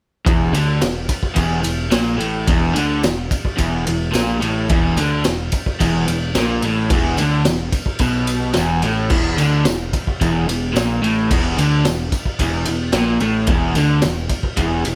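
Raw and rowdy, this garage rock cut moves at 109 BPM in a straight 4/4, all four parts kicking in together at 0.3 seconds and driving through to 15.0 seconds. A crunchy overdriven guitar carries the riff, bright and double-tracked, sitting up front in a low register around an E5 chord. Beneath it, a fuzz-laden picked electric bass adds a warm, overdriven low end. The raw garage drum kit sounds gritty and saturated in a small room, with a punchy kick, medium-tuned snare, crash and ride cymbals, and a rolled-off top. A very quiet, jingly tambourine sits in the background, and a light reverb gives the excerpt just a touch of space.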